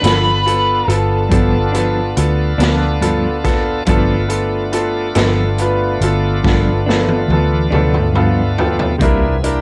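Laid-back and rollicking, this slow 12/8 blues excerpt opens on a G7 with a smooth overdriven lead guitar voicing a brief melody that stops at 2.1 seconds, over a bright, woody upright piano, a clean electric guitar with tremolo, and an overdriven tonewheel organ holding shouting chords through a slow rotary speaker. A dark, foam-muted fingered electric bass sits up front beside a raw garage drum kit of hi-hat, boomy kick, snare and toms, its saturated, rolled-off sound carrying cassette tape character. The drums break into a fill at 6.4 seconds and the piano adds its own fill at 7.7 seconds, both leading into a C7 at 9.0 seconds, all in a dry home cassette recording.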